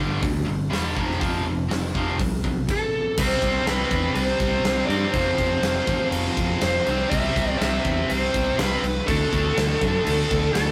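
A straight 4/4 hard rock groove at 122 BPM drives this anthemic, powerful passage cut from a longer piece, with a huge acoustic arena kit entering at 0.2 seconds, its punchy kick, medium-tuned snare, bright cymbals and pumping hall sound sitting up front alongside a tight, double-tracked distorted guitar riff and a growly, direct picked electric bass. At 2.7 seconds a biting, overdriven lead guitar takes the melody high above the riff as the chords move from G5 and F toward C5, F5, C and D5. Light reverb and the rough rehearsal-room feel, with its saturated glow, give the whole thing a raw, live edge.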